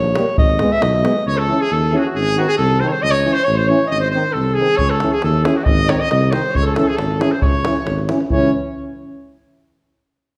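A clear, distant trumpet carries the melody from 1.3 seconds, sitting up front with a roomy, classical-style tone in this restless, bittersweet Balkan brass band piece, cut from a longer performance. It moves at 136 BPM in a straight 2/4, in C# harmonic minor, over a chord cycle that swings between C#m and G#. The alto saxophone opens the passage with a solo before settling into a background second line. The dark, punchy tuba holds the bass up front, while the euphonium and a mellow trombone with light vibrato, soft attack and a smooth top fill in the accompaniment further back. A tight, close and dry davul drives the opening, drops away, and returns at 4.8 seconds. A wet recital hall reverb and a dusky production give the ensemble a sense of space.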